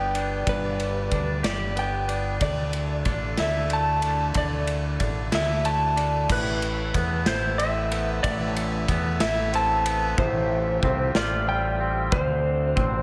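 In a slow, straight 6/8 pulse of 62 BPM, this hopeful, soaring post-rock passage builds over G, Dsus2, Amadd9, Fadd9/A and D7, with a big rock drum kit of punchy kick, bright cymbals and a medium-tuned snare up front alongside a growling, overdriven fingered bass. A twangy clean electric guitar plays arpeggios with subtle chorus and slapback echo, while a slightly broken-up slide guitar carries the melody with its own slapback. A clear brass ensemble with light vibrato holds soft-edged chords in the background, and a lush hall reverb gives the fragment a big arena sound.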